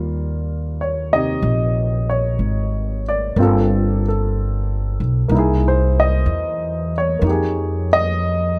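Close, detailed microphones and a dry room put both players up front, so the baby grand's action noise and the woody grain of the bass strings come through plainly. This is a tender, intimate jazz ballad with a gentle swing, heard in a short section taken from a longer piece. The upright bass is plucked, growly and woody on steel strings, and carries the low end throughout. The baby grand piano supplies the accompaniment with a natural, warm tone and short sustain, voicing rich chords in its middle register. The harmony moves from Ebadd9 to Gm11 at 3.4 seconds, then through C7alt to Fm11 at 7.2 seconds, and the moment ends at 8.6 seconds.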